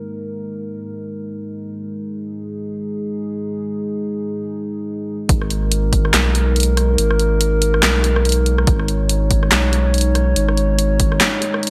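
Deep dubstep in G# minor at 142 BPM with a swung half-time feel, this heavy, cavernous excerpt opens on a dark, detuned analog pad with chorus holding sustained chords alone until the drop at 5.3 seconds, when a thick, tube-saturated sub bass, a punchy layered electronic kick and a deep house kit of handclaps, hi-hat, rim click and a fat snare bathed in gated reverb arrive under light digital ambience and bright 1980s-style production.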